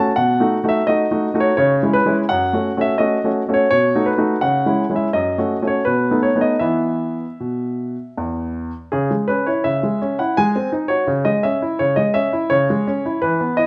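A clear, polished baby grand piano plays alone and up front in this graceful, cheerful classical-period sonatina, moving in a rubato 3/4 around 84 BPM through B7, C#m and F#m chords in E major. At 8.9 s the music turns to C# minor, leaning on G#7 before settling back on C#m, with the piano ranging from E2 to A5. A moderate reverb from a large studio gives the present tone some air, and the passage is cut from a longer piece.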